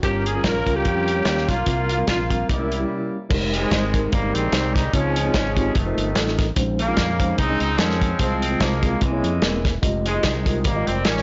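Solemn yet fervent, this uptempo gospel swings in four with a blown-out, overdriven sound, a dull top end and light small-room reverb. A growling, raspy alto saxophone with breathy subtone and scooped notes leads the melody alongside a loose, roomy horn section, while a very quiet French horn section holds sustained chords. The saxophone drops out at 3.1 seconds, during a short break, and the French horns follow at 3.3 seconds as the break ends. Underneath, a mellow tine electric piano comps cleanly, a fingered electric bass sits direct and amped, and an up-front soul drum kit with dark cymbals, a tight kick and a soft-clipped snare drives the groove.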